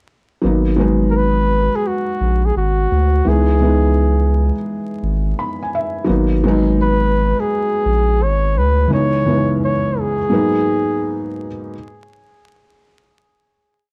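Lo-fi hip hop at 85 BPM in G# minor, hazy and reflective, where a soft, felt-muted upright piano with audible action noise loops rootless push-rhythm chords through cassette tape, low-pass filtering and plate reverb, adding a short fill at 5.0 seconds, while a deep, saturated sub bass plays a sparse line with slides and chromatic approach notes until 8.9 seconds, and a veiled, bucket-muted trumpet solo spins a free, jazz-style melody over G#m7 and C#m7 changes that close on G#m9, all set against light reverb and vinyl crackle.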